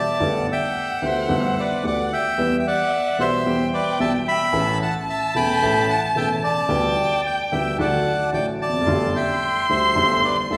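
A reedy, dark bandoneon opens this melancholic, passionate tango excerpt up front, carrying the melody in G major at 111 BPM in 4/4 with a rubato feel. Alongside it from the start, a single bowed violin sits distant in the mix, playing a second line with vibrato, portamento and expressive phrasing. At 0.2 seconds a concert grand piano enters up front as accompaniment, its deep bass and open, short-sustained tone reaching down to E1. The harmony moves from Gadd9 through Em and A to G/D and D before arriving on Gsus2. The whole passage rings in a wet recital hall reverb with a 1.8-second tail, giving the sound of a church or concert hall.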